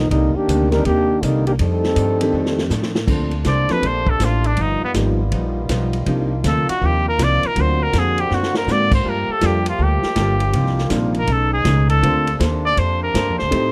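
A swung 4/4 groove drives this joyful, brassy big-band excerpt, with the acoustic drum kit's punchy kick, medium-tuned snare, hi-hat, ride and crash cymbals propelling a pizzicato upright bass whose woody, growly tone sits up front. A smooth-topped trombone section carries the opening line with vibrato until 2.7 seconds, and a drum fill ushers in the next section. From 3.5 seconds a bright, vintage-toned trumpet takes the solo melody with vibrato and jazz phrasing, while a second trombone section, lighter in vibrato, holds sustained chords in the background. A concert grand piano with deep bass, long sustain and audible action noise comps with an intimate, natural sound, and a dark, clean hollow-body electric guitar picks its accompaniment further back in the mix. Extended harmonies such as minor ninths, altered dominants and major ninths colour the changes, and the dry, close 1970s-style studio sound keeps the recording immediate.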